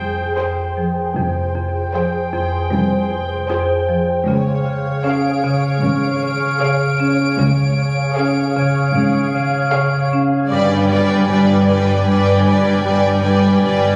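An uneasy, ominous cinematic passage opens with a bubbling, resonant synth texture of detuned sawtooth chords, up front with chorus and its own reverb, alongside a woody, dry, close-miked marimba riff and a low bed of cello and double bass sections in the background. From 0.4 s, lush bowed violin sections carry a focused melody and a smooth second line over a clear viola accompaniment, and at 4.3 s a higher violin section adds a close, even texture as the harmony moves from Fmadd9 to Db and then G at 10.5 s. A moderate scoring-stage reverb surrounds the ensemble, captured on a phone in the room, and the excerpt is cut from a longer piece.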